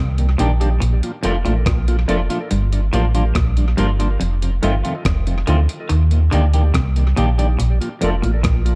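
A dark, clean semi-hollow electric guitar riff opens this roots reggae excerpt alongside a deep, round sub bass that sits up front, setting a serious, hypnotic mood at 71 BPM in a straight 4/4. Within the first fraction of a second a smooth tonewheel organ with key click and slow rotary speaker joins, along with a gritty, compressed sampler-style drum kit of thumpy kick, hi-hat and rim click. A second, picked semi-hollow guitar enters at 0.4 s in the background, its clean tone dressed in lush chorus and tape echo. The harmony moves through Ebmaj7, Bbmaj7, Gm7 and F7 before returning to Ebmaj7 and Bbmaj7. The mix is dry of reverb but heavy with tape echo on the organ, drums and background guitar, while the sub bass carries the weight.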